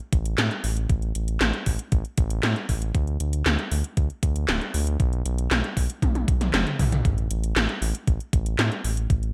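Dreamy and romantic, this synthwave excerpt moves at 117 BPM in a straight 4/4, built on an overdriven, thumpy electronic kick drum and 80s electronic pad drums with handclaps, metallic hi-hat, and a snare and toms that carry gated reverb, with a drum fill arriving at 6.0 seconds. Alongside them a round analog bass spans D1 to A2, its deep, mellow sustained tone mixing sawtooth, sine and triangle colours with a fast attack. The bright 1980s-style digital production places all three parts up front in a light reverb.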